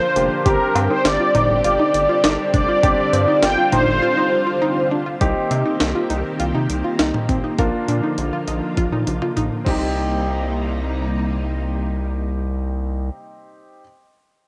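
Steeped in moderate spring reverb and the character of a home cassette recording, this cool, melancholic synth-pop fragment opens with a brassy, detuned synth brass melody, shaded by chorus and phaser, that sits up front until 4.9 seconds. Beneath it, lush string-machine chords with a sub octave join a clear, intimate grand piano in the background, its action noise audible. A round, deep analog bass blending square and sine waves and full-bodied sawtooth pluck arpeggios with tape echo run throughout, while a gritty, pitched-up jungle sampler-style kit with a thumpy kick and cowbell plays up front and into a drum fill before dropping out at 9.8 seconds.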